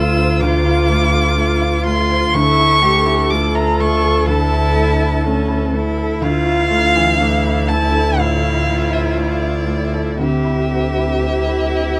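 A dark, intimate single violin opens this reflective, longing neoclassical fragment at once, its close, airy bow, soft attack and vibrato carrying the melody up front alongside a felt-muted upright piano, cello, viola and double bass. The piano's thin felt tone is soft and mellow, laying a hushed accompaniment beneath the strings. A rich cello sings a second line with expressive portamento and vibrato, while a distant viola adds gentle, sliding inner harmony. The bowed double bass holds a steady D throughout, giving the harmony a grounded, warm floor as it moves from F/D through A/D and Dmadd9 to Cadd9/D. The rubato phrasing unfolds in a slow 4/4 under light reverb across the full 12 seconds of this excerpt from a longer piece.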